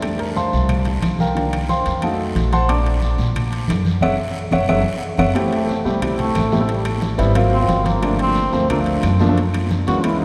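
Driving straight 4/4 at 180 BPM, this lively, danceable Afro-Cuban jazz excerpt is cut from a longer piece and opens with a grand piano solo over thumpy, gut-strung pizzicato upright bass, soft-handed congas with a thick, damped skin sitting in the background, woody claves, raspy, saturated guiro and ringing metal-shell timbales. The piano sits up front with an intimate, natural tone, long sustain and audible action noise, moving through rich harmonies such as C13, F7b9 and Bbmaj9. At 4.0 seconds the band hits an accent on a Gb5 chord, and a drum fill follows at 4.5 seconds. From 5.5 seconds a trombone with a metal mute takes the solo, bright, buzzy and breathy with a thin, smooth top, in a jazz style over changes like Am7, Ab13 and Gm9. The whole band is bathed in a lush cathedral reverb that gives it the feel of a church or concert hall.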